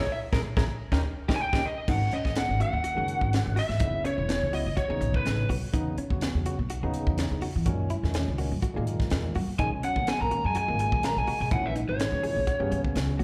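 An overdriven lead guitar through a small cranked amp, picked and up front with slapback echo, leads this intense, driving electric jazz fusion excerpt over woody pizzicato upright bass, a crisp drum kit with a high-tuned snare entering at 0.3 seconds, bright tine electric piano, and dark, compressed clean guitar stabs soaked in lush chorus, while a breathy, distant trombone adds a whispered second line from 9.6 to 12.8 seconds, all heard as a live club gig through the venue's PA.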